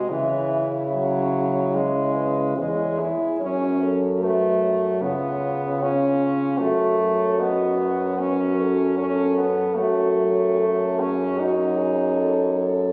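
In a rubato 4/4, this lyrical classical passage for horn quartet, cut from a longer piece, unfolds over C#m, F#m and C#7 before settling on F#m69. A mellow, punchy horn with light vibrato carries the melody in the background beside a warm second horn line, while a clear, soft-attacked accompanying horn and a close-miked bass horn with light vibrato sit up front. Captured on a phone in the room, the sound is compressed and bathed in moderate concert hall reverb.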